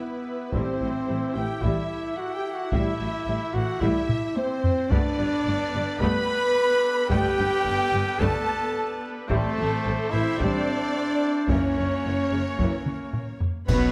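Heavy-sticked taiko drums, close and dry, enter at 0.5 seconds to drive this heroic, dramatic cinematic orchestral film cue at 110 BPM in 4/4, carrying drum fills beneath a dark, expressive violin melody, a rich, focused second violin line, clear violas, tight woodwind chords, distant French horns, a solo trumpet's stabs with light vibrato, mellow trombones, and smooth cellos and double basses moving through Em, Am7, Gadd9 and F#7, until bright clash cymbals and concert bass drum strike a band accent at 13.7 seconds within a moderate scoring-stage reverb.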